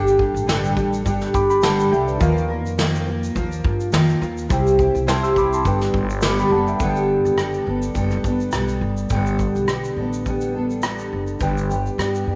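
Carefree and heartfelt, this acoustic pop excerpt moves at 104 BPM in G major with a gentle swing on the sixteenths, built around an up-front, full-bodied fingerpicked jumbo steel-string guitar that is double-tracked. A mellow, reedy electric piano with fast tremolo adds a fill from 1.1 to 2.2 seconds, while a woody, thumpy pizzicato upright bass on gut strings and a distant, roomy brush kit with punchy kick, rim click, shaker and snare fill out the groove. Chords drift from Gsus2 through Ebsus2, C and Gadd9 before settling on G at 11.4 seconds, all bathed in a moderate echo-chamber reverb.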